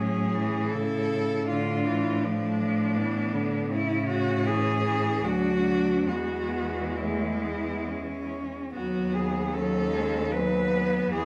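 Heard through a wet recital hall with a 1.5 s reverb tail, this tender, lyrical classical fragment for cello ensemble moves in a rubato 3/4 at 65-83 BPM, tuned to A4 = 436 Hz. Four bowed cellos, each a single player with vibrato, sound together from 0.0 to 11.2 s: a rich, focused melody cello set distant yet up front, a close second line, a clear accompaniment part, and a bass cello likewise placed far back yet forward, all moving through harmony from A and Dm/A to D, E and B/D#.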